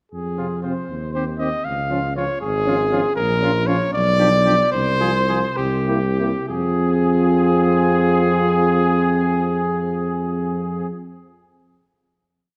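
Heroic and grave, this brief classical piece for brass quintet moves in a rubato 6/8, slowing from 2.4 s before arriving on a final chord at 6.5 s. A warm trumpet with light vibrato carries the melody up front over a soft-attacked tuba bass on the beats. A vintage-toned second trumpet, with a French horn and a smooth trombone in the background, adds after-beat and sustained chords, all within the lingering reverb of a scoring stage.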